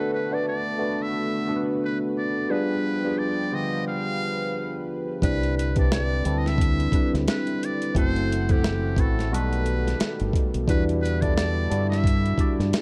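A muted trumpet opens this short neo-soul and R&B excerpt, playing a jazz-style solo melody with a buzzy, thin edge, light vibrato, scooped notes and a slapback echo, over a worn, slightly out-of-tune tine electric piano that is lightly overdriven through a combo amp and colored by a phaser. Behind them, a sawtooth analog pad with a soft attack and chorus holds sustained chords in the background, giving the 88 BPM groove a warm, smooth mood. The harmony moves from Bm7 through G7b9 to Cmaj9, then on through F#m7b5 and B7b13 to Em7. At 5.2 seconds a deep, round fingered electric bass and a dusty, sampler-style drum kit enter together, the bass dark and punchy and the kit gritty and tape-toned with a thumpy kick, a medium-tuned snare and hi-hat. Swung sixteenths give the 4/4 pulse a relaxed lean, and the dry, close sound keeps the drums and electric piano up front, with the trumpet close-miked.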